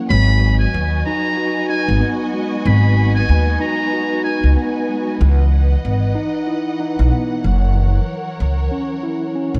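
Hip hop at 94 BPM in 4/4 with a swung sixteenth-note feel, this moody, reflective excerpt cut from a longer piece sits on a G#m7 chord before moving to C#m11 at 5.2 seconds and F#7 at 7.4 seconds. An acoustic upright bass, played pizzicato, sits up front with a woody, thumpy tone from its steel strings, holding the low register throughout. A mellow tine electric piano supplies clean accompaniment through its built-in speakers, colored by cassette tape and filtering, while a studio string section, bowed sul tasto with vibrato and a soft attack, holds intimate sustained chords. A trumpet with a metal mute carries the jazz-style melody from 0.1 to 4.5 seconds, its brilliant, buzzy, thin sound marked by light vibrato, breath and a touch of delay. Light reverb and a small room ambience frame the mix.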